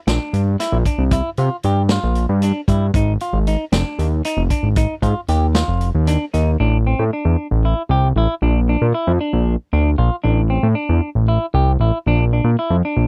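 A dry, close recording in a 1970s studio style carries this bright, driving progressive instrumental, cut from a longer piece and moving in 7/8 at 230 BPM counted in eighths, with tuning set to A4 = 444 Hz. A fat, detuned sawtooth analog bass sits up front as the loudest part, its fast-attack, decaying notes spanning F1 to C3, while a dark, clean semi-hollow electric guitar plays fingered arpeggios between C4 and G4. A vintage acoustic kit with a punchy kick, medium-tuned snare, hi-hat and a rolled-off top drives the opening over C9sus4 and Ab5 until 6.5 s, after which bass and guitar carry the second section alone over alternating Am and Bb chords.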